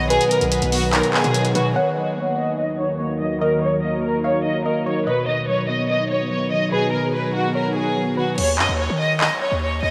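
A soft-attack studio violin section, pure, floating and up front, carries the brooding, melancholic melody of this hip hop and trap excerpt at 145 BPM in a half-time feel, over chords moving from B to E-flat minor and back. A mellow, clean tine electric piano and a deep, detuned sawtooth pad sitting in the background fill out the harmony, while a gentle, wave-folded pluck adds a second line. A punchy, heavy 808 bass and an electronic trap kit of crash, handclaps and bright hi-hats appear only at the opening and again from 8.4 seconds, with the hats muted in that final stretch, while a filter sweep runs through the long middle section and the dreamy mix is soaked in huge, wet reverb.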